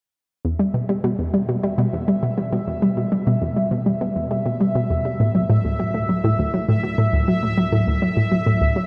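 Ambient, sequencer-driven space music with a cosmic, mysterious mood, this short cut from a longer piece rides a steady, straight pulse as a round, detuned analog pluck riff sits up front from 0.4 seconds, its sawtooth-and-square tone given a quick, snappy filter pluck, chorus and tape echo, while a filter sweep moves across the arpeggiated synth sound. From 0.7 seconds a quieter, bubbling texture high above, resonant and sustained with random filter steps, fades in slowly behind it. The harmony moves from E minor to D add nine at 5.2 seconds, and the whole mix floats in a huge, dreamy reverb that trails on for seconds.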